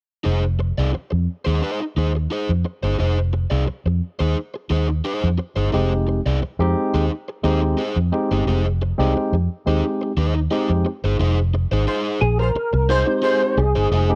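Funk with a sly swagger, this excerpt opens on a crunchy overdriven guitar and a dark, foam-muted fingered bass, round and punchy up front, over an Fm7 chord. A barky tine electric piano, lightly driven through a combo amp, adds bright stabs from 5.7 s. Near the end, a smooth horn section with light vibrato carries a brief second line while a fat, percussive tonewheel organ with key click and slow rotary speaker takes the melody from 12.2 s, all in a dry, close 1970s-style studio sound touched by digital ambience.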